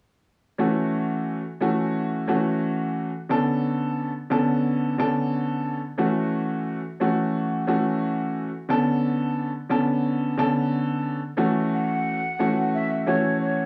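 A short, moody hip hop clip sits in a damp small-room reverb, with a cassette-tape haze and filtering that trims the top and bottom of the piano. An up-front upright piano, woody, smooth, slightly detuned and vintage, carries the accompaniment over a swung groove, cycling between F#m7 and Bm9. That tough, brooding pair of chords holds through the opening section before a new section begins at 11.4 seconds. At 11.7 seconds a silver concert flute enters with the melody, airy and mellow with a straight tone and a crisp, chiffy attack. Set distant and unsteady, the flute carries a slapback echo and its own filtering, and both parts play on until the clip cuts off at 13.7 seconds.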